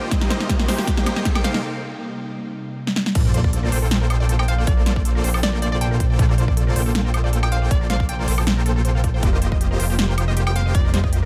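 The sound is dry and loud, with an overdriven, up-front electronic kick and a big-room dance kit of punchy snare, crisp hats, crash and woodblock, both touched with studio reverb. This bright, playful future bass excerpt sits in a half-time feel. It opens on a build-up over a minor seventh chord, with a drum fill, a very quiet riser and sub drop, and filter sweeps on a synth pluck and the ethereal, airy pad, easing into a break at 1.6 seconds. At 3.2 seconds the drop lands on a major ninth chord with an impact. Huge, lush supersaw chords carry a tape-coloured riff over a fat, detuned sawtooth bass, both pumping against the sidechain. A hollow, bouncy square pluck melody with chorus and delay returns at 4.4 seconds, while a punchy unison pluck arpeggiates in the background and the mellow, very quiet pad sustains chords underneath before a final suspended ninth chord.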